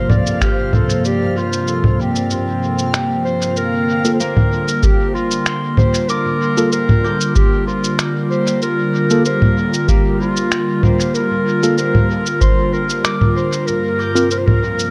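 A straight 4/4 pulse at 95 BPM sets this deep, spacious ambient dub piece in G minor, carried by up-front electronic congas, shaker and finger snaps that sound pitched down and muffled under a dub echo, joined by a deep analog kick that appears at 0.4 seconds and returns from 4.8 to 12.5 seconds. An airy, breathy pad holds sustained chords throughout, its detuned, chorused body opening on Bbsus2/G before settling into Gm7 at 3.6 seconds. Over it, a distant, roomy clarinet sings a mellow solo melody with tape echo, while a concert harp rings out fingerpicked arpeggios further back, also through tape echo. A reversed, granular texture swells brightly in the background for the first 3.6 seconds, and from 4.0 seconds a clean tine electric piano adds stabs through a combo amp with medium tremolo and dub echo. The production is dark and warm with light reverb and digital ambience, and this excerpt is cut from a longer piece, closing back on Bbsus2/G.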